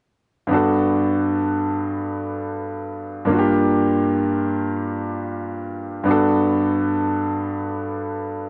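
A clear, up-front grand piano plays alone from 0.5 seconds, moving in free time through lush, romantic soul harmony in G major: Gmaj9, a shift to Gm7 at 3.3 seconds, then back to Gmaj9 at 6.1 seconds. Its voicings sit between G2 and A4, tuned slightly sharp to A4 = 443 Hz. Light reverb and a dark production that rolls off the highest treble frame this short fragment of a longer piece, which ends at 8.5 seconds.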